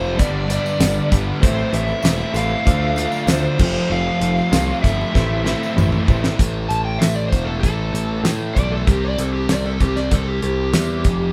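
A straight 4/4 pulse drives this gritty classic rock cut from a longer piece, with a damped 70s drum kit sitting up front, its fat snare, tight kick and dark cymbals sounding dry and polished, and a drum fill arriving at 5.1 seconds. A bright, growly picked electric bass stays prominent beneath three overdriven guitars in the background: a warm, double-tracked crunchy guitar that drops out at 6.4 seconds, a warm picked electric guitar, and a sludgy, dark distorted guitar, all carrying riffs. An overdriven slide guitar with a dusky, fingered tone carries the melody from the start and turns into a solo from 6.4 seconds. Very quietly underneath, a shouting tonewheel organ with key click and slow rotary speaker holds sustained chords, while a reedy, worn and slightly out-of-tune electric piano with fast tremolo and a jingly tambourine play only through the opening section. The chords move from G through A minor, D minor and F before settling on A minor and C, and the whole band sounds as if playing live together in one room with moderate reverb.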